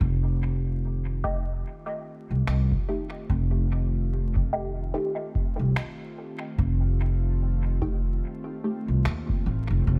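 A woody, thumpy upright bass sits up front in this spacious, peaceful ambient dub piece, its pizzicato gut strings giving a dark, acoustic weight beneath a relaxed 73 BPM groove in 4/4 with a swung sixteenth feel in F mixolydian. A deep analog electronic kick, re-recorded in a large room, anchors the pulse, while muffled, pitched-down finger snaps with dub echo arrive at 2.5 seconds. An airy, breathy pad fades in across the whole passage, holding soft, full-bodied, detuned chords built on F9 with chorus, ring modulation and a long, mellow release. From 1.2 seconds a muted, nasal dub chord stab enters with a fast-attack filter pluck, moving notch, phaser, analog chorus, cassette tape character and dub echo. The mix is dry and intimate, dusted with vinyl crackle throughout this section cut from a longer piece.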